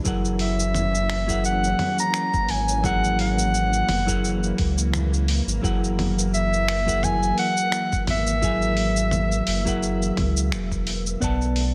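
Smooth and warm, this sunset chillout excerpt moves at an unhurried 86 BPM in 4/4 with a gentle swing on the sixteenths, resting on an F#7 chord before turning to Bm7 near the end at 11.2 seconds. A mellow soprano saxophone carries the melody up front from 0.4 to 10.5 seconds, its smooth top and light vibrato trailing into tape echo in a classical-style solo voice. Beneath it, a clean, fingered semi-hollow electric guitar supplies accompaniment with a hollow-body tone, while a soft string machine holds silky, slow-blooming vintage chords thickened by ensemble chorus. A round sine sub bass anchors the low end with deep, sustained notes. The rhythm comes from a dusty soul sampler-style kit of finger snaps, hi-hat, shaker and toms, gritty and tape-warm as if re-recorded in a small room, joined by a thumpy electronic kick sitting in the background, all wrapped in a light reverb.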